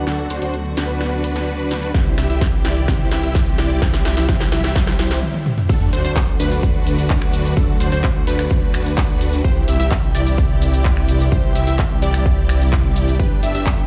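A dark, bowed string section holds sustained chords in the background while a huge, thick supersaw plays its riff through a low-pass filter sweep, all pumping together with a menacing, beating detuned saw bass in this triumphant, anthemic progressive house cut from a longer piece at 128 BPM. The big-room drum kit of snare, toms, handclaps and snaps builds with a fill, a punchy electronic kick joins at 1.9 s, and a very quiet riser and sub drop sit under the build-up and carry into the drop. A brief stop at 5.2 s gives way to the drop at 5.7 s, marked by an impact, where a lush, bright unison pluck enters in the background with phaser and dub echo on its arpeggios. The kick stays up front in the mix, and the saturated bass gives the low end a gritty body, while the airy supersaw's dub echo trails behind its riff. The harmony moves between D and C before landing on G near the end, and the whole track sounds as if played on a big sound system in a bare room, with a large studio reverb.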